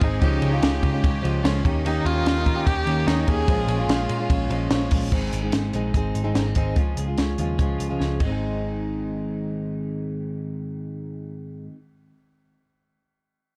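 Jangly indie pop with a bright, nostalgic mood, heard in a short cut from a longer piece. A dark, woody solo violin carries the melody with vibrato and analog delay, shadowed by a clear, biting chamber violin section in the background, and both strings fall away by 4.9 seconds. Underneath, a fingerpicked plugged-in steel-string acoustic guitar and a twangy, compressed twelve-string electric guitar playing arpeggios run through the whole passage, joined by a round, foam-muted vintage bass. A compact cocktail drum kit sits up front with a punchy kick, high-tuned snare and dark cymbals, closing with a fill as it stops around 8.3 seconds. The chords move from Db through Eb7 and Bbm7 before settling on Ab, and the production is dark and warm with light reverb.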